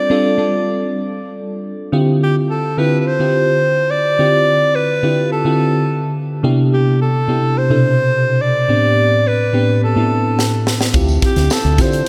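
Bittersweet and nocturnal, this polished 1980s jazz-funk pop excerpt moves at 106 BPM in a straight 4/4, set in D dorian. A breathy, whispered alto saxophone carries the melody throughout, intimate and soft in attack, with an analog delay trailing its lines. Beneath it, a bell-like FM electric piano supplies sparkling, quickly decaying chords touched by tremolo and subtle chorus, moving from G7sus4 through Dm11, Cmaj7 and Am11. The drum kit arrives at 10.4 seconds with a fill, its high-tuned snare and punchy kick sounding crisp and airy. At 10.9 seconds a fingered electric bass with an envelope filter joins alongside a jingly, very quiet tambourine as the harmony returns to Dm11. The whole mix is soaked in a long church reverb, giving it a dreamy, late-night haze.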